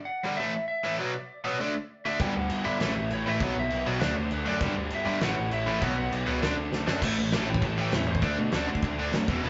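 A straight 4/4 punk rock pulse at 199 BPM sits in half time until a drum fill at 6.7 s kicks this rowdy, rebellious clip into a new section at 7.0 s, moving through chords such as A5, Bm, D and G5. A twangy, slightly broken-up lead guitar with tape echo carries the melody from the start, joined almost at once by a bright, cranked stack guitar riff up front. At 2.2 s a second overdriven guitar riff enters in the background, along with a growly fuzz bass and a loose acoustic drum kit with a fat snare, punchy kick and dark cymbals in a pumping room, all set in moderate reverb and a rough rehearsal-room sound with a rolled-off top.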